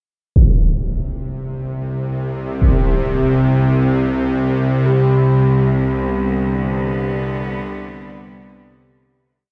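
Dark ambient drone in free time, ominous and cavernous, tuned to A4 = 441 Hz and set in a vast, echoing space with a huge reverb. A huge, filtered impact strikes distant, slow hits from 0.4 s, and a tense, sawtooth-edged bowed-like drone with vibrato and ring modulation settles low over a Csus2 chord from 1.0 s. At 4.9 s a rich, reedy chamber cello section adds slowly shifting sustained chords while a metallic bronze singing bowl rings a bright held high note, as the piece fades out.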